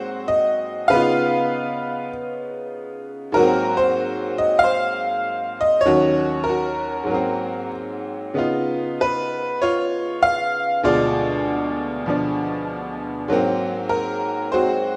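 A lone tack piano, up front with a jangly, metallic bite, plays sophisticated solo jazz in a loose swung 4/4 with rubato phrasing, moving through rich ninth chords from Ab9 to Db9 and a Ddim7 near 10.8 seconds inside a lush hall reverb, all captured in a rough home-demo sound with lossy artefacts across this 15-second cut from a longer piece.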